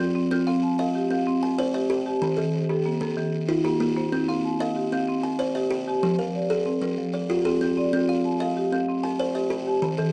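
A buzzing kalimba with a bright, woody thumbnail pluck and a dark, smooth marimba struck with medium hard mallets both open at 0.0 seconds, weaving interlocking arpeggios in a rippling southern African mbira-style cycle at 126 BPM in 12/8, tuned to an equiheptatonic scale around C and moving through Cm, Eb and F chords, while light reverb and a worn, warbling cassette-tape pitch drift give this excerpt from a longer piece its warm glow.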